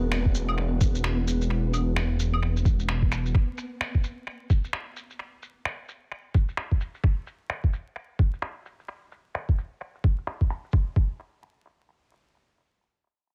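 Swung sixteenths at 130 BPM in 4/4 drive this rainy, melancholic future garage fragment, where a menacing, saturated detuned saw bass pumps up front beside a grainy, flickering reverb-washed texture until about 3.3 seconds, while muffled, tape-softened electronic finger snaps, shaker and claves run under a filter sweep to 10.7 seconds and a thumpy, compressed kick sits forward until 11.1 seconds, inside a dry, echo-heavy mix dusted with vinyl crackle.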